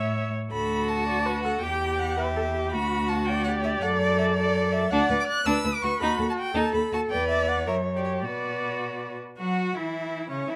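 A quick, spirited classical-period string quartet movement in 6/8 at 109 BPM, where a close, expressive first violin carries the melody with vibrato and portamento over a rich, focused second violin, a soft-attacked viola accompaniment and an even, up-front cello bass, all in light reverb, moving from D major into B minor at 4.9 s before a brief new section at 9.4 s in this short excerpt cut from a longer piece.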